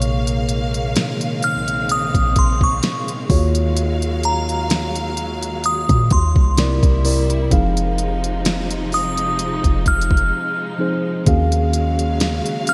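A glassy FM synth bell carries the melody from 1.4 s, its crystalline, warbling tone shaped by chorus, tremolo and delay high above a sensual, longing contemporary R&B groove with a gentle swing. Beneath it, a mellow tine electric piano plays clean accompaniment chords, a lush bowed string section holds sustained harmony with close vibrato and sidechain pumping, and a deep, boomy 808-style bass with a sine-and-noise tone decays under each note. Up front, a smooth, tape-warm electronic drum kit with soft kick, fat snare and smooth hats carries gated reverb, and a brief break arrives at 10.3 s, all set in a lush hall with bright 1980s-style digital production in this fragment of a longer piece.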